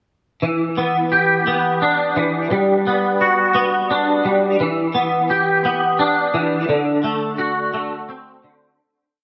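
Post-rock in E minor at a slow 58 BPM in 6/8, this brooding, cathartic short piece features a single clean, twangy electric guitar up front, playing fingered, compressed picked arpeggios through ensemble chorus and analog delay over Em7, Gmaj7 and D7 chords, bathed in a lush hall reverb from 0.4 seconds until it fades out between 6.7 and 8.8 seconds.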